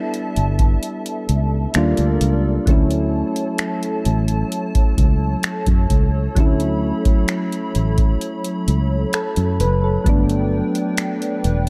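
A straight 4/4 groove from a booming analog drum machine, with its deep kick, finger snaps and metallic hi-hat, anchors this smooth, romantic contemporary R&B excerpt, where a round, foam-muted fingered electric bass joins at 0.4 seconds beneath mellow, chorused electric-piano-like synth keys and a hollow, flute-like pad with ensemble chorus, moving from A7sus4 through Ebmaj7 to a long Dmaj7 and then Gmaj7 in a dark, dry mix.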